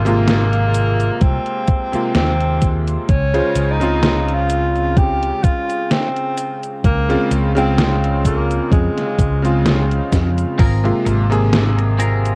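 Vaporwave at a slow 64 BPM in Ab major, this woozy, nostalgic fragment of a longer piece sways on a light sixteenth-note swing, its whole sound worn and warbling with old cassette tape pitch drift and little reverb. A clear, distant tenor saxophone carries the jazz-style melody with light vibrato and a soft attack, roughened by 12-bit sampler grit and tape echo until it stops at 10.1 seconds. Beneath it, a mellow fretless electric bass sits dark, round and punchy with lush chorus, while a bright, cutting electric grand piano with clangy low notes and chorused unisons holds the accompaniment over Ab69 and Dbmaj7 chords. A gated 80s digital drum machine plays cabasa, crash, hi-hat and a gated-reverb snare, overdriven and up front, joined from 1.2 seconds by a thumpy, overdriven electronic kick. After a drum fill, a twangy, clean, compressed electric guitar enters at 10.6 seconds with a chorused, gritty riff as the harmony returns to Ab69.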